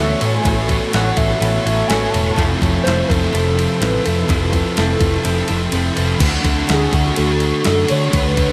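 Shoegaze and dream pop rock at 125 BPM in a straight 4/4, this hazy, dreamy passage is cut from a longer piece and drenched in a huge ambient reverb. A soft, round sine lead carries the melody with vibrato, chorus and digital delay, while a boxy, woody twelve-string acoustic guitar picks shimmering, octave-doubled arpeggios in the background under lush chorus and delay. Up front, a thick fuzz guitar grinds out a distorted riff thickened by ensemble chorus, and a compressed, direct-recorded clean electric guitar plays its own riff through reverse reverb in the background until 6.2 seconds. A dark, round hollow-body bass anchors the low end, and a thumpy, sampler-style 12-bit drum machine enters at 0.2 seconds with kick, snare, ride and crash, its kick and snare dropping out between 5.2 and 6.2 seconds. The harmony moves from A69 to Fmaj7 and settles on Dmaj7 as the section repeats.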